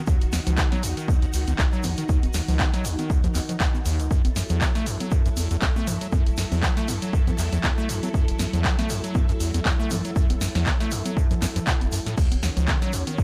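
Driving and gritty, this acid house excerpt runs at 119 BPM in 4/4 with a 16th-note swing of 55%, cut from a longer piece and sitting over chords that move from Ebm7 to Gbm7 at 4.1 seconds and back to Ebm7 at 12.2 seconds. A squelchy, hollow square-wave acid bass carries the riff from Eb1 to A3, its resonant filter sweep and fast, decaying attack thickened by tube saturation. Up front, a punchy analog electronic kick drives the groove, joined by an analog drum machine supplying congas, crash cymbal, handclaps, hi-hat and a punchy snare, both kits re-recorded in a large room. A grainy, bright acoustic tube shaker sits in the background from 0.1 seconds, captured in a live room. Throughout, a lush, vintage sawtooth string machine with a sub octave and moving notch holds slow-attack sustained chords from Eb3 to A4, treated with ensemble chorus and sidechain pumping, and the overall mix stays dry with little reverb.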